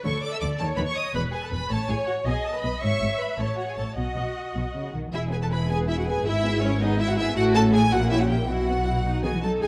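Set in a rubato 6/8, this cheerful, lively classical-period string orchestra excerpt sets a focused first violin melody over a second violin line with expressive portamento, a rich, even viola accompaniment, and a bass of woody, dark cellos and soft-attack double basses, all bowed with vibrato and captured by close, detailed microphones in a moderate scoring-stage reverb.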